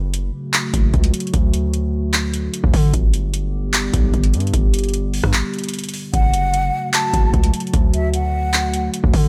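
A small-room, brooding trap clip, cut from a longer piece, where a booming analog drum machine with deep kick, metallic hats, handclaps and rim clicks sits up front beside a punchy, saturated 808-style bass, a detuned, chorused analog pad holds dark sustained chords beneath, and after a break at 5.3 seconds a breathy concert flute with vibrato and delay enters at 6.1 seconds for a short expressive second line.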